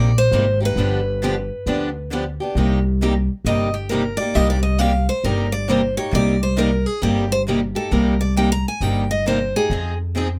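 A swung 4/4 pulse at 134 BPM drives this bittersweet, fiery acoustic string swing in C minor, a short cut from a longer piece. A dark, woody, thumpy upright bass with gut strings sits up front, while two boxy parlour guitars pick the accompaniment, one of them showing finger squeak. A bright, up-front concert guitar with fresh strings carries the melody over Cm7 and G7, then takes a solo from 2.6 seconds over Cm7 that reaches Fm7 near the close, all captured by close, detailed microphones with light reverb.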